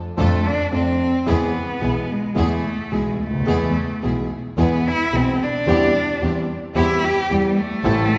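A rich, up-front bowed cello sings a passionate second line with vibrato and portamento over warm concert grand piano accompaniment, dark bowed double bass, and clear, lush string stabs in this sultry, rubato tango at 110 BPM, moving from Dm/F to E and then C/E, all set in the wet reverb of a church or concert hall in a short cut from a longer piece.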